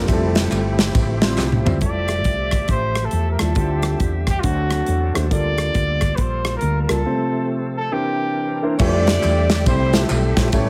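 A heavily compressed, radio-like sound with light reverb frames this short cut from an uptempo gospel piece in F major, moving at 138 BPM with a swung eighth-note feel and a reverent, hopeful mood. An up-front acoustic drum kit with a tight kick and medium-tuned snare drives the groove alongside a dark, round, punchy hollow-body electric bass, while a woody, intimate upright piano with audible action noise and a reedy, bright tonewheel organ, lightly overdriven through a slow rotary speaker, fill out the harmony. A mellow, tightly voiced horn section with soft attacks and octave doubling carries the melody at the opening and returns at 8.8 seconds, framing a vibrato-laden trumpet solo that runs from 1.8 to 8.6 seconds, punchy yet roomy. Tambourine, egg shaker and group handclaps sit in the background with a vintage, band-limited tone during the horn passages, and a drum fill at 1.4 seconds leads into the trumpet's entrance. 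The chords move from Fmaj9 through Dm11, D7, Gm9/D, F/C and C9 before landing back on Fmaj9.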